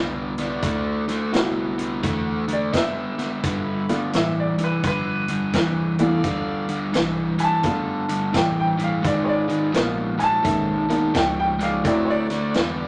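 A laid-back, rollicking electric blues shuffle fragment opens with a picked, overdriven electric guitar riff up front, a clear, polished upright piano accompanying above it and a thumpy pizzicato upright bass with gut strings sitting in the background. At 0.4 seconds a tight, mellow horn section adds smooth jazz-style stabs, and a gritty, saturated vintage drum kit joins with hi-hat, a punchy kick and a medium-tuned snare under a rolled-off top. The harmony moves from D9 to G9, then through G#dim7 back to D9, all set in a wet club reverb.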